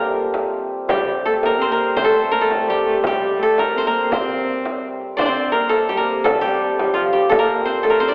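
A driving, ancient-feeling medieval dance in 3/4 at 168 BPM opens with koto, hammered dulcimer, viola da gamba and pedal harmonium sounding together, and a small, bright frame drum joins at 0.3 s. Up front, the koto carries the melody, played with fingerpicks and sounding dry and woody. Behind it, the hammered dulcimer shimmers on a second line in the same register. The bowed, fretted viola da gamba adds a lower second line with a rich gut-string tone, light vibrato and period-style playing, while the pedal harmonium holds a dark, breathing, mellow drone in the background. A new section begins at 5.2 s in this short cut from a longer piece, and the ensemble sits in a wet scoring-stage reverb filtered through a thin telephone sound.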